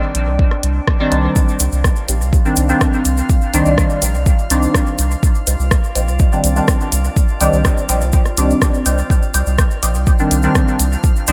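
A calm, glassy texture of drifting overtones opens this hypnotic dub techno passage at 124 BPM in C minor. It is joined by a round, soft sub bass with sidechain pumping, a small-room deep house kit of hi-hat and rim click with dub echo, and a deep, up-front electronic kick from 0.4 s. A juicy, resonant polysynth enters from 1.0 s, its filter sweeps and phaser colouring its stabs, followed by a muted, detuned chord stab with lush chorus sitting in the background and grainy acoustic cabasa from 1.4 s, all hovering over a single Cmadd9 chord.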